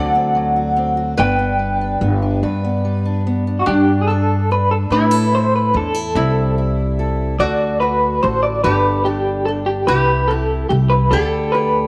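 In a steady, unhurried 6/8, this peaceful acoustic folk piece, cut from a longer performance, sets a slightly broken-up, compressed electric guitar up front with tremolo, carrying the melody and opening into a clean solo from 3.7 s, while a metallic, nasal resonator slide guitar played with fingerpicks weaves a second line through tape echo, a fingerpicked archtop supplies warm accompaniment, and a woody pizzicato upright bass sits close underneath, all bathed in a moderate echo chamber reverb.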